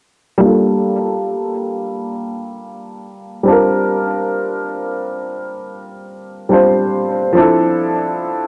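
A slow, swung 16th-note feel at 69 BPM in 4/4 sets a hazy, reflective hip hop mood in this short cut from a longer piece. A lone upright piano carries everything from 0.4 to 8.5 seconds, moving through Gm7, C9sus4 and Dm7 in the range from F3 to C5. Its tone is worn, woody and slightly detuned, sitting present and up front in the mix. A low-pass filter and tape echo shade the piano, and a filter sweep runs across its whole passage. Light studio reverb surrounds a dry, gritty hardware sound.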